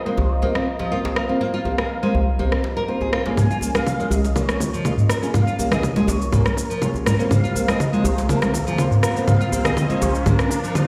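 A straight 4/4 groove at 122 BPM drives this hypnotic, earthy afro house passage in Bb minor, cut from a longer piece. A tape-warm afro-pop drum kit sits up front with rim click, shaker and toms, its snare, toms and percussion low-pass filtered, while a tight djembe played with hard hands adds cracking accents. At 3.4 seconds the build-up begins: a punchy, layered electronic kick and ringing, high-tuned vintage congas join in the background, a drum fill runs to the end, and a filter sweep moves over the felt piano. Above the rhythm, a smooth sawtooth-and-triangle synth lead carries the melody with vibrato, ensemble chorus and dub echo, over a deep, detuned analog pad whose slow-attack chords pump with the sidechain. A soft, boxy felt-muted upright piano plays stabs and a fingerpicked classical nylon-string guitar plays arpeggios, both pumping, filtered and echoed, as the harmony moves from Fsus4 to Bbm7 and back. 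From 6.4 seconds a background riser builds, and the whole mix rings in recital-hall reverb as if played on a big sound system in a bare room.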